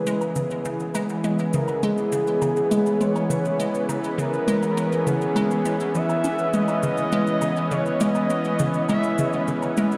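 Hypnotic and expansive, this ambient, sequencer-driven space music excerpt moves at 102 BPM in C# dorian on a single C#m7 chord, with a smooth, expressive portamento lead carrying the melody with vibrato, chorus and delay until 9.4 s over a lush, thick, warbling unison pad, a hollow, bouncy, nasal square pluck riff with chorus and delay, and quiet analog-sounding cabasa and woodblock echoing through delay, all bathed in a huge, wet reverb that suggests a big sound system in a bare room.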